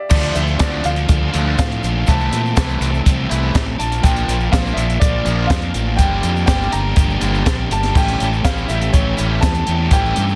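Indie rock in D minor at 122 BPM in a straight 4/4, this short cut from a longer piece feels bittersweet and restless. A clear, woody upright piano carries the melody from the opening moment, its intimate tone revealing audible action noise and trailed by a digital delay. Beneath it, a crunchy overdriven guitar plays a picked riff, joined by a second, brighter overdriven guitar riff that sits compressed in the background with a lush chorus. Up front, a fuzzy fingered electric bass with overdrive anchors the low end, alongside a compact cocktail drum kit with a dark, smooth, rolled-off top, a punchy kick and a high-tuned snare under crash and hi-hat. A very quiet tonewheel organ holds full sustained chords through a slow rotary speaker, while a grainy egg shaker adds faint texture from a live room. The harmony moves from Dm7 through Am/C, Bb and Gm7 to A7, all within a small room ambience and a dense, heavily limited modern master.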